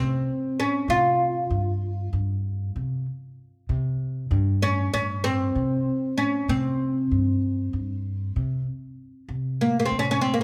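Turkish makam ensemble music in a stately, festive 9/8 at 193 eighth-note beats per minute, in makam hicaz on C and tuned to A4 = 441 Hz: a bright, woody, fretless oud with double strings, plucked with a plectrum, carries the melody up front while a thumpy, warm pizzicato upright bass on gut strings holds the low end close beside it, both playing live together in a large studio with moderate reverb before the music shifts to a new section at 9.3 s in this short cut from a longer piece.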